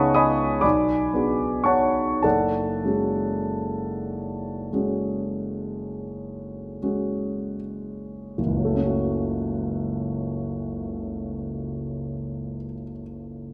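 A clear grand piano, present and up front with long sustain, plays alone in this hazy, wistful impressionist classical excerpt in a rubato 9/8, spanning low bass to high treble through chords like C#m9, Bm6 and F#madd9, slowing through its first 8.4 seconds before settling on F#m, all set in a moderate scoring-stage reverb.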